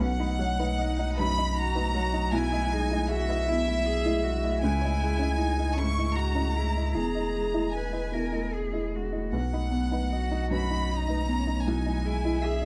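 A rich chamber violin section sings the melody up front with vibrato over a clear, woody upright piano, a deep dub sub bass and a gentle, dark pluck whose arpeggios carry chorus and tape echo in the background, while a distant solo cello adds a smooth second line from 0.8 s in this intimate, hopeful neoclassical piece at 78 BPM in a rubato 3/4 and B major, caught by close, detailed microphones in light reverb.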